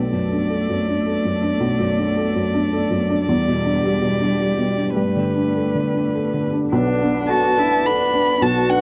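From the first moment a rich, smooth bowed violin carries a longing melody over a clear, focused cello line, a soft felt-muted upright piano, a shimmering ambient pad glowing with chorus in the background, and ringing fingerpicked harp arpeggios that fall away at 3.6 seconds and return at 6.7 seconds, all in a melancholic neoclassical piece at a rubato 106 BPM in 3/4 that moves through Bm7, Em7 and Gadd9, captured in a dry, close 1970s-style studio sound.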